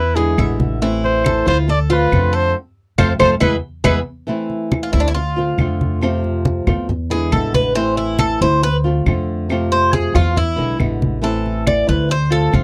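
A mellow trumpet melody with vibrato opens this nostalgic, sultry Cuban son and guajira piece in A harmonic minor at 138 BPM, over metallic, double-stringed Cuban tres arpeggios and thumpy pizzicato upright bass, joined almost at once by a fingerpicked flamenco guitar on old strings, low-tuned thick-skinned congas and woody claves in the background; after a band accent from 2.5 s the trumpet drops out at 4.0 s, and the up-front tres takes a solo from 4.3 s, all in a dry, close 1970s-style studio sound with light reverb.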